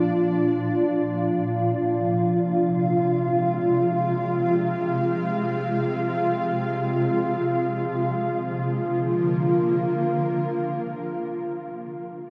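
Warm and luminous, this ambient fragment drifts in free time, a short section cut from a longer piece. A single shimmering pad carries everything, holding sustained chords from the opening through 11.4 seconds. Its sound is ethereal yet dark, built from detuned sine voices in unison with an octave-up shimmer and a granular grain. Slow attacks and long releases let each chord bloom and linger, while chorus and the pad's own reverb thicken it up front. The harmony moves from Bb to Fm at 1.5 seconds and settles back on Bb at 8.0 seconds. A huge, wet reverb tail stretches around it all, giving the brief passage a vast, floating space.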